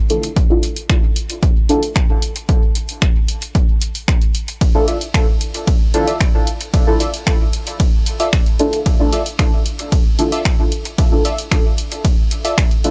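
An up-front, punchy electronic kick drum anchors this dub techno excerpt, its analog, tape-saturated thud sounding as though it was re-recorded in a small room. Beneath and around it, a deep, mellow chord stab built from layered waveforms with a sub octave decays quickly into a dark haze of chorus and phaser, pumping against the kick and trailing off in dub echo on a single D minor add-nine harmony. A punchy analog drum machine fills out the groove with finger snaps, hi-hat and ride cymbal, their echoes adding to the cavernous, meditative mood. At 4.9 seconds a crisp, digital wavetable stab enters, its detuned unison voices plucked through a filter, pumping and echoing in the upper register. The recording is dry and gritty, with little reverb and audible lossy compression artefacts, cut from a longer piece.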